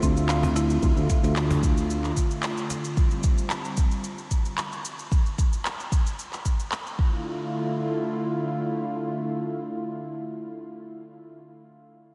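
An earthy, mystical organic downtempo excerpt in D minor at 112 BPM, where a smooth, warbling vintage analog pad with subtle chorus, sidechain pumping and a filter sweep holds chords from Dm7 through G7sus4/D to Dm until 11.2 seconds, while a deep, up-front electronic kick, electronic cabasa and handclaps, a snappy cajon in the background, a growly fretless electric bass, a brief, very quiet plectrum-plucked oud and a buzzing, woody marimba sit in a dreamy mix soaked in huge ambient reverb.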